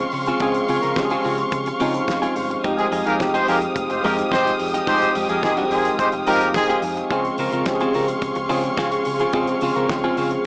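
Disco cut from a longer piece, danceable and glamorous, with a tine electric piano sounding worn and slightly out of tune up front, adding short fills around 1.8 and 6.3 seconds, over clean picked electric guitar, lush bowed studio strings holding sustained chords, and a round, dark hollow-body bass. A damped 70s drum kit keeps hi-hat, kick and snare dry, with a tight kick and a fat snare, while a punchy horn section with light vibrato and octave doubling stabs in from 2.8 to 6.8 seconds. The chords move from Dbmaj7 to Fm9 and back, all set in a small room with light reverb and a small-speaker sound.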